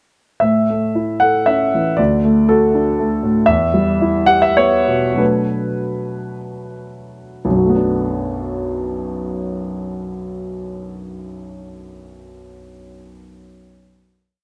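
A solo grand piano carries this short, complete neoclassical minimalist piece, its tone warm, natural and up front, spanning B1 to F#5. The mood is intimate and wistful, in B minor and 3/4, with a rubato feel and a tempo that moves between 72 and 122 BPM, tuned to A4 = 441 Hz. A single-line melody sits over broken chords that pass through A, D, Em and Bm7, and the pace slows as the opening section unfolds. From 7.4 seconds a final chord rings until about 12.2 seconds, with the piano sounding until 14.4 seconds. Light reverb gives the instrument a gentle sense of space.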